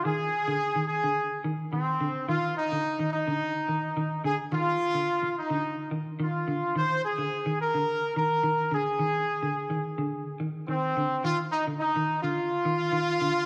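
A tight, punchy horn section opens the passage with a defiant, funky melody in F dorian over a steady Fm7, its light vibrato sitting up front in a pop-style blend. From 0.1 s a clean electric guitar picks dark, scooped arpeggios colored by analog chorus, driving this straight 4/4 afrobeat groove at 107 BPM. A wet echo chamber reverb surrounds the short section, which is cut from a longer piece and tuned slightly low to A4 = 439 Hz.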